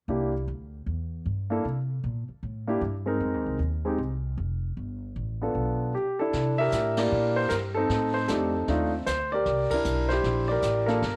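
An up-front grand piano carries the melody over a woody, thumpy pizzicato upright bass in this relaxed, swinging jazz trio excerpt, the piano's long sustain, audible action noise and slapback echo giving it an intimate character. At 6.3 seconds a distant, roomy brush kit with dark cymbals and a boomy kick joins for the second section, and the whole band hits accents at 6.9 and 9.7 seconds as the harmony moves through C13 and F13.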